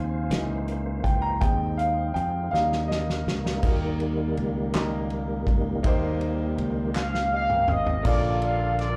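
Reverent and hopeful, this slow gospel excerpt in 6/8 at 54 BPM captures a live gig through the venue's PA, with a woody upright piano carrying a solo over a punchy, up-front fingered bass before a clean tonewheel organ with key click, fast rotary speaker and chorus vibrato takes the solo from 3.6 s. A natural country drum kit with dark cymbals and a fat snare joins at 0.3 s and plays fills, a hollow, band-limited group handclap with slapback echo comes in at 4.8 s, and a warm horn section with light vibrato enters on the melody at 7.0 s. The harmony moves through Dbm6, Ab/Eb and Eb before settling on Bbmaj7, all in a light club reverb.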